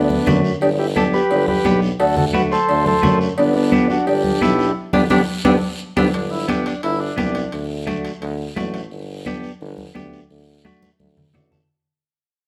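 A vintage, mellow combo organ carries the melody up front in this festive, danceable cumbia, cut from a longer piece, until it stops at 6.1 seconds, where the band begins to fade out. A clear tuba with vibrato holds down the bass beneath thick-skinned congas played with hard hands, a raspy guiro, and ringing metal-shell timbales and cowbell in the background, while a clean, compressed, picked semi-hollow electric guitar sits up front and adds short clean fills. A clear tenor saxophone with vibrato enters at 4.4 seconds with a brief second line amid a band accent and drum fill, and the whole group plays live together in a stone room with moderate reverb.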